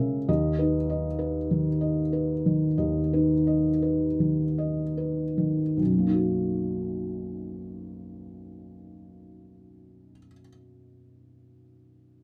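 Hopeful and peaceful, this brief neoclassical minimalist piano excerpt unfolds in a rubato 4/4, easing and slowing through its opening 5.8 seconds before settling into a second passage. A felt-muted upright piano plays alone from start to finish, its thick-felt tone soft, dark and intimate, sitting up front in a light reverb and ranging from deep bass notes to a gentle upper register. The harmony moves from a B chord over D# to a Bmaj7 at 5.8 seconds, lending the close a tender glow.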